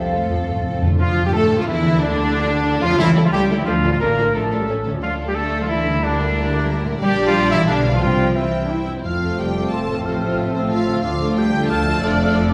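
A hard-mallet timpani fill opens this restless, urgent classical excerpt in 3/4 at 180 BPM. It sounds over bowed strings, with a lush violin melody carrying expressive vibrato, a focused second violin line, close violas, smooth cellos and distant double basses, plus a ringing, thumb-plucked concert harp, a pure flute section and a very quiet French horn section that both drop out after the opening moment. Up-front trumpet stabs enter at 1.0 s as the harmony moves from D minor toward F major, the timpani returns at 8.0 s, and around 9.0 s the mellow flutes and horns come back, joined by a clear solo clarinet and a background trombone section, in the reverb of a wet recital hall.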